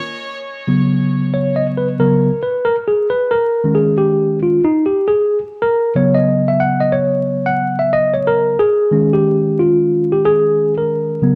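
A tine electric piano plays alone from 0.7 seconds, in a smoky, mellow hip hop excerpt at 91 BPM with a swung sixteenth-note feel. The piano sits up front with a worn, slightly out-of-tune tone, clean and direct, moving between C#7sus4 and D#7sus4 chords. A wet spring reverb, small room ambience, heavy echo and vinyl crackle surround it until 11.4 seconds.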